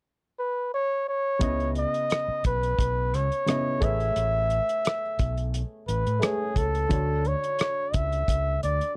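Lush 1970s-style soul at a relaxed 87 BPM in 4/4, with a lightly swung sixteenth-note feel and a silky, smooth mood, set in C# phrygian and tuned to A4 = 436 Hz. A close-miked flugelhorn carries the melody from 0.4 seconds, its warm, jazz-style solo line sitting up front with scooped notes. At 1.4 seconds the band joins over a C#m9 chord that moves to Amaj9 and then Dmaj7. A dark, mellow baby grand adds intimate accompaniment with a worn character, short sustain and audible action noise. Beneath it, an overdriven, amped fingered electric bass pushes punchy low notes, while a cloth-damped, thuddy drum kit with a tight kick, hi-hat and rim click has a small-room sound and a rolled-off top. The dry, close 1970s-style studio sound keeps the whole passage immediate, and this brief cut from a longer piece ends around 9.0 seconds.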